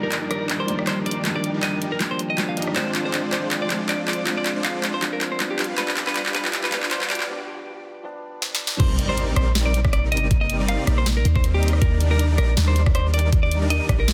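Future bass at 159 BPM in C minor, emotional and dreamy in a half-time swing, opens with a picked clean electric guitar melody carrying vintage sampler grit and digital delay over a soft felt-muted upright piano with audible action noise, a lush detuned supersaw riff filtered through cassette tape, an ethereal pad in the background and a deep, boomy 808 bass, all pumping to the sidechain while a sharp-snared trap kit with bright hats builds through fills and a filter sweep to a brief break. A very quiet riser leads into the drop at 8.8 seconds, where the piano stops, an impact hits, and a knocking, tape-warm electronic kick joins up front as the chords move from G7 to Cm9. The dense, heavily limited master sits in light digital ambience, and the clip is cut from a longer piece.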